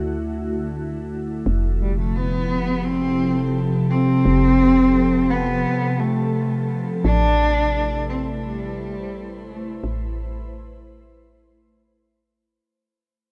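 A rough home demo mix with a dull, muffled top end and light studio reverb frames this glitchy, intricate IDM fragment in A minor, moving at a straight 86 BPM in 4/4 and cut from a longer piece. A glassy, ethereal FM pad with ensemble chorus, vintage 12-bit sampler grit and its own reverb holds slow-blooming chords over a soft, round FM bass with a woody, quickly decaying pluck, moving from D to F. At 1.8 seconds a dark, distant bowed cello enters with a vibrato-laden, delayed melody, and after a break at 5.6 seconds the harmony settles on Am7 as the music fades out from 7.0 seconds.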